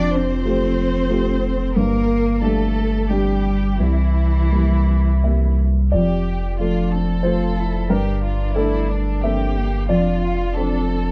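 A dark, lightly reverberant production frames this longing, melancholic neoclassical fragment in G dorian, moving in a rubato 3/4 at 81-94 BPM: a veiled, con sordino chamber violin section carries the melody with vibrato, a distant solo cello adds a muted second line with soft attack and portamento, a woody upright piano with short sustain supplies the accompaniment, and a deep, punchy sine sub bass with a pitch-drop attack sits up front beneath chords that drift from Fadd9 through Gm and C7 to Dm7/F.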